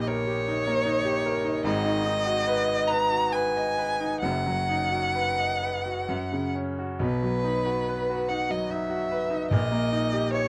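A single bowed violin and a concert grand piano begin together, both up front, in a lyrical, serene romantic classical piece in 3/4 with a free, rubato feel. The violin carries the melody with a smooth, expressive tone, colored by vibrato and portamento, while the piano accompanies with a brilliant, open sound anchored by deep bass. Light reverb and a dark, warm production frame this short passage, which is cut from a longer piece.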